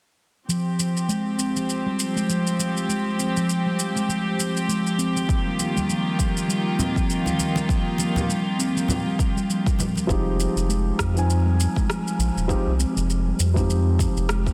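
Mystical and hypnotic, this organic downtempo excerpt opens at 0.5 seconds with a steel tongue drum played with soft rubber mallets, its ringing, meditative arpeggios filtered and delayed under a filter sweep. From that same moment, sul tasto strings with a floating, distant quality hold sustained chords that pump with sidechain, and a tape-warm electronic shaker and rim click sit behind them. A deep layered kick joins at 5.3 seconds, with compressed congas shortly after. At 10.1 seconds the strings and congas drop away as a thick-felt upright piano, intimate and filtered, enters with a round, wave-folded analog bass up front, all within a dense, heavily limited master and a huge ambient reverb.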